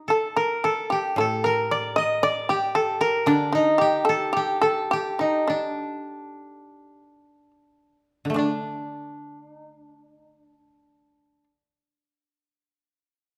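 A rubato 2/4 pulse drifting between 35 and 58 BPM, easing slower from 3.3 to 8.4 seconds, carries this austere, calm passage of Japanese traditional chamber music in D miyako bushi, where a buzzing, percussive, plectrum-plucked fretless shamisen takes the melody beside an up-front, woody koto second line played with fingerpicks, while a lower, dry koto accompaniment enters at 1.2 seconds, the trio heard in a moderate recital hall reverb.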